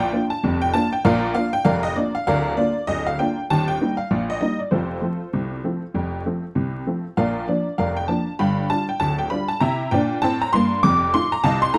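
Ragtime piano in Bb major, this cheerful, lively excerpt runs at a moderate 98 BPM in 2/4, with a gentle swing on the sixteenth notes and tuning set slightly low at A4 = 438 Hz. A single honky-tonk upright piano carries the whole piece, sitting up front and spanning from D1 to D6. Its detuned, jangly tone sounds bright and vintage, with short sustain that keeps each note crisp. The harmony moves from Bb through Bb/D, Eb and F, then returns to Bb before passing through G5 and C7 to land on F7 at 10.8 seconds. The production is dark overall, with moderate studio reverb and a layer of vinyl crackle that lends an old-record character.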